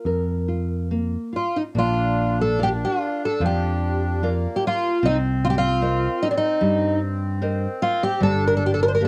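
A softly reverberant home cassette recording carries this tender, nostalgic fado-style ballad in Bb major, moving freely in rubato around 70-76 BPM, where a shimmering, octave-doubled fingerpicked twelve-string acoustic guitar sings the melody up front over a full-bodied nylon-string guitar and a picked electric bass with an amped, up-front tone, until a reedy, sweet accordion with light tremolo tuning adds an airy second line from 1.7 seconds as the harmony drifts through Bb, Cm7 and Gmadd9 in this brief passage cut from a longer piece.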